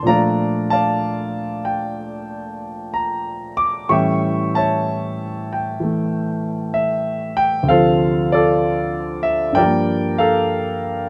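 A warm grand piano plays alone from the first second, setting a late-night, swinging mood in this brief solo jazz passage cut from a longer piece. The tempo is slow and loosely held, with a rubato feel over a lilting swung eighth-note pulse in four. The harmony moves from Bbmaj7 to A7 at 3.9 seconds, then to Dm7 and Gm9 before the passage ends at 11.1 seconds. The piano spans a generous range from D2 up to D6, its tone present and polished with long sustain, sitting up front in the mix. A light reverb surrounds the instrument, giving the solo a gentle sense of space.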